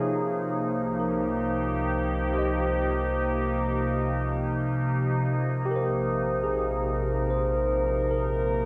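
In free time, this weightless, luminous ambient excerpt opens on a morphing wavetable pad holding sustained chords up front with chorus and its own reverb, a bright, clean tine electric piano arpeggiating through delay in the background, and a deep, rumbling, detuned drone that enters at 0.9 seconds and fades in beneath them, all moving from Cm7 to Bb5 at 5.0 seconds within a wet scoring-stage reverb.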